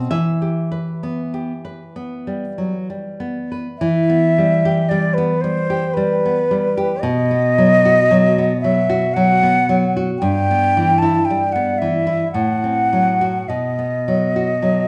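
A wet recital-hall reverb surrounds this elegiac, yearning romantic duo in E minor, cut from a longer piece and moving in a rubato 3/4 at around 48-57 BPM. A fingerpicked nylon-string guitar opens alone, deep and fresh-stringed with the odd finger squeak, until an airy concert flute, close-miked with soft attacks and expressive vibrato, takes the melody up front at 3.8 seconds. The harmony moves from E minor toward B before settling on a diminished chord that resolves back to B.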